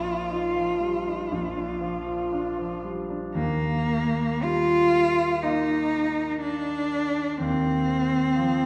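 A bowed cello and a concert grand piano begin together in this warm, lyrical romantic piece, cut from a longer work and set in Eb major at a slow 54-63 BPM in 4/4 with a flexible rubato feel. The solo cello carries the melody between Bb3 and F4 with a rich, focused tone, expressive vibrato and a smooth top, sitting up front in the blend. The piano accompanies beneath it, clear and open, reaching down to Bb1 for a deep bass. A Bbsus4 resolves to Bb early on, and a second section opens at 3.4 s on Eb, moving to F7 over Eb before the passage ends at 8.7 s. A long, wet concert-hall reverb surrounds the duo, giving the sense of hearing them from further back in the room, and the tuning sits slightly low at A4 = 439 Hz.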